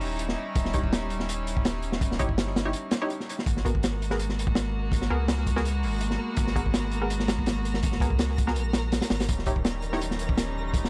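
Dark and nostalgic, this drum and bass excerpt at 165 BPM in G# minor rides a crunchy, punchy breakbeat kit with a rolled-off top over a soft, round dub sub bass, while a reedy chamber string section with a gut-string tone holds sustained chords moving from D#7b9 to G#m9. A muted, filtered dub chord stab enters at 0.7 s, colored by chorus, 12-bit sampler grit and dub echo, and a brief break falls at 2.7 s. From 3.8 s a twinkling granular texture with built-in reverb sparkles in the background, all captured as a dry, gritty hardware recording with transformer saturation.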